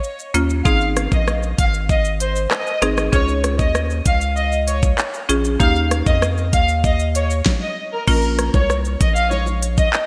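A pop drum kit opens this hypnotic, tough dancehall groove at 97 BPM in Bb dorian, its knocking kick, fat snare, crisp hi-hats, handclaps, rim clicks, shaker and crash cymbal sitting up front under gated reverb. At 0.3 seconds a buzzing marimba struck with hard mallets enters with dry, woody accompaniment that pumps against the beat, joined by a round analog bass whose deep, nasal tone anchors the low end. A lush violin section carries the melody from 0.7 seconds, its bowed ensemble sound full of vibrato and portamento and trailed by digital delay. The chords move from Bbm through Ab, Db and Eb before a brief stop at 7.5 seconds, after which the music returns to Bbm and low-tuned bongos appear in the background. The bright 1980s-style digital production and light studio reverb frame this short cut from a longer piece.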